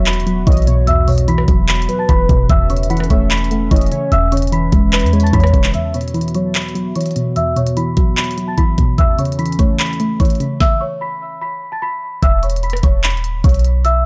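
An overdriven, up-front trap drum kit with knocking kick, sharp snare, crisp hats, handclaps and rim clicks drives this wistful yet triumphant half-time hip hop excerpt at 148 BPM, where a worn, bell-like celesta carries the slightly out-of-tune melody over a velvety background synth lead, a soft round pluck, a warbly tape-like pad and a deep, boomy 808 bass that drops out at 5.7 seconds as a filter sweep begins, then returns at 12.2 seconds after a stop from 10.6 seconds, all moving from Esus2 through A/E and C#m7 to a closing E5 in a dark, digitally ambient mix.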